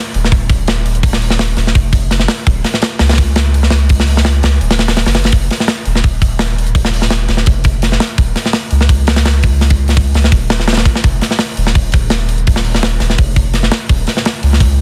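A straight 4/4 drum and bass groove at 168 BPM drives this raw, nostalgic jungle clip, with a tight, up-front acoustic kit of hi-hat, medium-tuned snare and tight kick carrying a big-room, mid-forward character and soft clipping on the kick. Underneath, a round, deep dub sub bass with a fast attack and sustained notes moves between Eb1 and Db2, both parts playing together from 0.1 seconds to the end. The sound is dry, with dense, heavily limited modern mastering and a layer of vinyl crackle lending a dusty, old-record feel.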